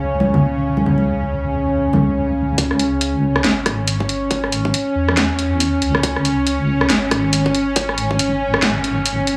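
Set in a small room with a moderate spring reverb, this dark, meditative deep dubstep excerpt opens on a tense, string-like bowed drone with slow attack and vibrato, sustained over a deep, wobbling sawtooth bass thickened with chorus, while bright acoustic congas played with soft hands trail dub echo until 2.0 seconds. At 2.6 seconds a half-time, swung build-up begins as the chord settles, bringing a layered garage kit with a cracking snare, warm hats and rim clicks up front. A tight, high-passed electronic kick runs beneath it until 8.2 seconds.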